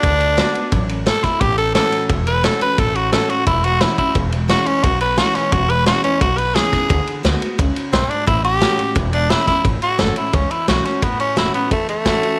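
A raspy, punchy tenor saxophone takes an up-front solo with bright vibrato through the opening 9.6 seconds of this upbeat, rollicking rockabilly excerpt before the music moves into a new section. Beneath it, a picked dreadnought-style steel-string acoustic guitar adds a bright, full-bodied picked accompaniment with audible finger squeak, while a woody, thumpy upright bass with gut strings is played pizzicato. A saturated vintage kit of tight kick, medium-tuned snare and dark ride cymbal sits forward with a gritty, rolled-off top, all in a small room with light reverb.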